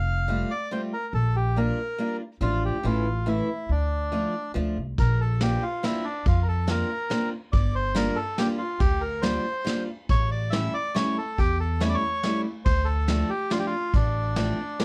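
Nostalgic and bittersweet, this musette waltz in 3/4 sets a reedy bandoneon melody over a growly pizzicato upright bass and a boxy, woody picked old ladder-braced acoustic guitar, with a vintage brush drum kit of dark cymbals and punchy kick joining at 5.0 seconds, all in a dark, warm production with light reverb.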